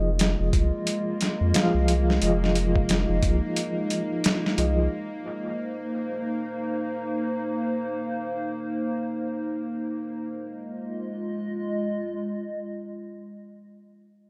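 A light reverb and digital ambience frame this smoky, hypnotic trip hop excerpt in F minor, moving at 89 BPM in 4/4 with a swung sixteenth-note feel. A dusty soul sampler-style drum kit sits up front with a thumpy kick, a medium-tuned snare, hi-hat and gritty overdrive, alongside a round, deep analog bass carrying tube saturation. A mellow tine electric piano adds accompaniment through tremolo, tape echo and vintage 12-bit sampler grit, while a warbling, nostalgic tape-like pad holds sustained chords with chorus and its own reverb. Drums, bass and piano drop away at 4.9 seconds as the harmony shifts from Fm7 to Cm7, leaving the pad and a faint, string-like drone on a single note, tense and bright with vibrato and reverb. The drone ends at 10.3 seconds as the chords return to Fm7, and the lo-fi pad carries on alone until 13.8 seconds.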